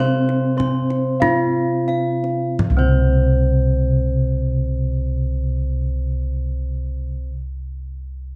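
Low bossed gongs carry the bass with a round, beating bronze tone, anchoring this serene, shimmering Javanese gamelan passage in a slow 4/4 at 42-50 BPM, cut from a longer piece. Ringing bronze metallophones play the melody, a lower accompaniment and a high arpeggiated line, joined by a second set of bossed gongs on arpeggios, while a deep kendang in a live room plays from 0.3 to 3.3 seconds. The pace slows over the opening 2.6 seconds before a new section begins, all captured with close, detailed microphones and light reverb.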